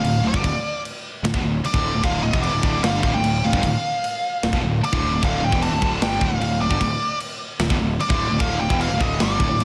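Heavy metal at 150 BPM in D minor, aggressive and epic, holding on a single D minor chord through this 9.6-second cut from a longer piece. A dark, nasal lead guitar with a parked wah and overdrive carries the melody up front, while two bright high-gain rhythm guitars, one scooped, pick the low riff in the background with distortion and slapback echo, over a growly fuzz-driven picked bass. A tight, up-front acoustic kit with a medium-tuned snare, tight kick, crash cymbal and rolled-off top drives it all, and a lush 2.3-second hall reverb gives the mix a big arena sound.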